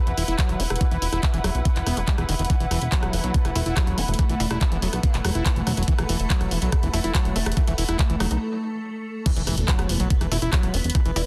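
Veiled, con sordino strings open this driving, intense psychedelic trance excerpt at 142 BPM, pumping against an up-front knocking kick, layered techno drums with crash, handclaps, hi-hat and rim click, a punchy, funky analog bass, a squelchy, gritty acid riff with tape echo, a very quiet metallic FM wobble line from 2.9 seconds, and, from 3.2 seconds, a bright, morphing wavetable pad with chorus, phaser and its own reverb, until the strings stop at 8.4 seconds for a brief break before a very quiet electronic impact marks the drop at 9.3 seconds in a dense, heavily limited, dry mix.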